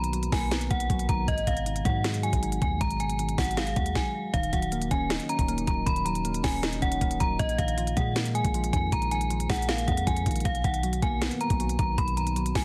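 Hip hop and trap in Eb minor at 157 BPM with a half-time feel, this brooding, melancholic clip from a longer piece sets a ringing, inharmonic FM bell melody, up front and bright with chorus and a low-pass filter, over soft, round electric-piano-like synth keys that carry the same chorus and filtering along with a sub octave and a filter sweep. Underneath, a deep, boomy 808-style bass with a sine tone and a noise layer decays beneath a tape-tinged trap kit of knocking kick, sharp snare and crisp hats. The harmony moves from Bmaj7 and Abm7 into Ebm7 and Bb7sus4 after 4.3 seconds, all within a digital ambience, a dense, heavily limited modern master and a layer of vinyl crackle.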